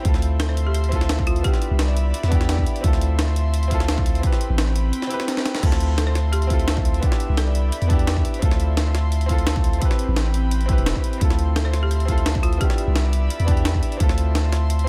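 A deep, mellow 808-style bass sits up front in this soulful, dreamy liquid drum and bass cut from a longer piece, driven by a punchy layered electronic kick and a gritty, pitched-up breakbeat kit with a high-tuned snare, hi-hat and crash that moves through a short break and fill before 5.6 seconds, while a clear, intimate grand piano with audible action noise and a delay, an airy, breathy pad with chorus and sidechain pumping, and brief phrases from a woody, rustic marimba struck with hard mallets through digital delay float over minor-ninth and major-ninth chords in a digital ambience.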